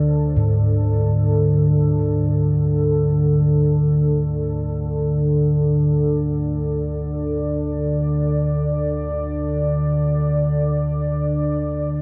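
In free time, this desolate, cavernous dark ambient drone fragment sets an ominous, wave-folded rumbling drone up front beneath a moody sawtooth pad with chorus that fades in throughout, while mellow bronze gongs struck with padded beaters play arpeggios through a diffuse delay from 0.4 to 6.8 seconds and a very quiet, close-miked quartz singing bowl rings with slow beating, inside a vast, echoing space with an 8.6-second reverb tail.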